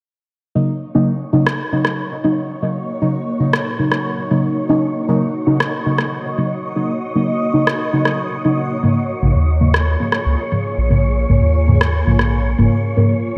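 A straight 4/4 pulse at 116 BPM drives this hazy dub techno excerpt in Eb minor, with an electronic rim click sitting up front, layered and treated with gated reverb and dub echo. Mellow chord stabs begin at 0.6 s, their dark tone, built from triangle, sawtooth and sine waves, softened by chorus, phaser and a filter sweep as each stab decays into dub echo over Ebm7, shifting to Bbm7 at 8.8 s. Behind them a granular cloud pad holds blurred, detuned chords with a slow attack and long release. A breathy, wind-like tuned noise texture hovers on a single Db5, and both it and the pad sit low in the mix beneath built-in reverb and ensemble chorus. A soft, round sub bass enters at 9.2 s and adds sustained low weight near the close. The whole excerpt is framed by a lush hall reverb within a bright, 1980s-style digital production.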